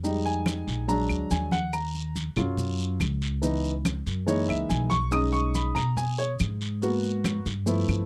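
Lively and sunny, this short cut from a longer Afro-Cuban jazz piece moves at 142 BPM in a straight 4/4. A warm baby grand piano sits up front with a natural tone, taking a solo across its range from E3 to D#6 over chords moving from Fm7 through D#m9, C#m9 and B69 to G#m7. The upright bass shares the foreground with woody, pizzicato steel strings. Soft-handed congas with thick, medium-tuned skins, grainy and mellow maracas, and dry, woody claves entering at 0.5 seconds all sit in the background, while a raspy, compressed and saturated guiro joins them. The recording is dry and close in a 1970s studio manner, with little reverb, and a brief drum fill lands at 7.9 seconds just before the cut.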